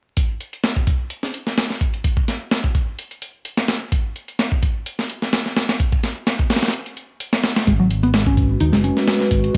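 A swung sixteenth-note breakbeat groove drives this energetic, funky breaks excerpt, its gritty, compressed sampler-style kit of thumpy kick, medium-tuned snare and hi-hat sitting up front and carrying the piece alone until a pair of dark, round, punchy electric basses enter at 7.7 s on a G#m7 chord: a foam-muted picked bass riff above a fingered low line. At 8.4 s a deep, moody, detuned analog pad joins with slow-attack sustained chords, colored by chorus, phaser and sidechain pumping. Cassette-tape saturation on the drums, picked bass and pad, plus vinyl crackle and light reverb, give it a lo-fi home-recorded feel.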